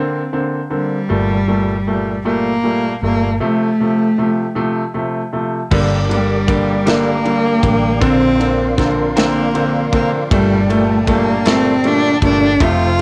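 A rich, smooth bowed cello sings the melody up front over a clear, deep-bottomed grand piano from the opening moment of this tender, romantic six-eight pop ballad excerpt; a round, foam-muted fingered bass joins at 1.1 seconds, and at 5.7 seconds a punchy studio drum kit with crash and ride cymbals, a very quiet direct-recorded clean guitar picking arpeggios, and a soft, flute-like tonewheel organ holding background chords through chorus vibrato and a fast rotary speaker fill out the lightly reverberant small-room sound of this home cassette recording.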